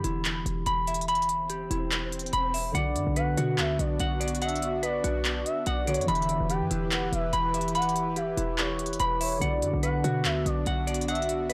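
A dark, clean semi-hollow electric guitar plays fingered arpeggios through analog delay at the front of this eerie, hard-hitting half-time trap excerpt, over a ringing, thumb-plucked concert harp, a punchy, tight short 808-style bass and an overdriven trap kit with crisp hi-hats and handclaps. An electronic swell sounds at 1.4 seconds. At 2.7 seconds a smooth, gliding portamento lead with vibrato, chorus and delay enters as a second line, joined by an airy, breathy pad of sustained chords, all in a dry, gritty mix with transformer saturation.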